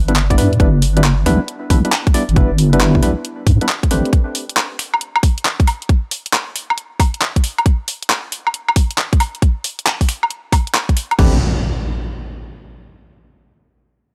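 A deep, dark wobble bass with a chorused, saturated tone opens this moody, skippy two-step UK garage cut at 136 BPM in A minor, joined at once by hollow, mellow organ stabs touched with chorus and analog delay as the harmony moves from G6 to Am11. Bass and stabs drop out at 4 seconds, leaving an overdriven, up-front garage kit of hi-hat, handclaps, finger snaps, woodblock and crash over a tight electronic kick to carry the swung groove. At 11.2 seconds the bass and stabs return briefly as an electronic impact hits, and the recording throughout sounds dry and gritty with transformer saturation.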